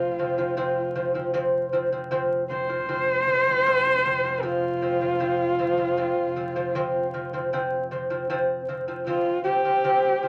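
A dark, husky horsehead fiddle leads this proud Mongolian folk excerpt at 78 BPM, sitting up front with a boxy, bowed tone, vibrato and sliding portamento over delicate fingerpicked arpeggios from a gut-strung lute whose doubled strings ring with a warm, acoustic glow. Beneath them, a rich bowed double bass holds a smooth, even F drone with its own vibrato until it drops out at 9.1 s, leaving fiddle and lute to carry the galloping spirit to the cut at 10.3 s. A wet small room and a vinyl crackle give the recording an intimate, aged character.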